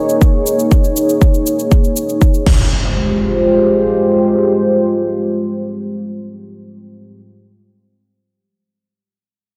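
A dark analog pad runs through this short cut from a melodic techno track, holding deep, detuned sawtooth chords up front with chorus and sidechain pumping, moving from Eb7sus4 to Fmadd9 in F minor at 120 BPM. A deep, up-front electronic kick and a fainter layer of electronic shaker and crash cymbal drive the opening until 2.6 seconds, while an electronic impact enters at 2.5 seconds and carries on beneath the sustained pad. The mood is dramatic and hypnotic, set in a moderate concert hall reverb.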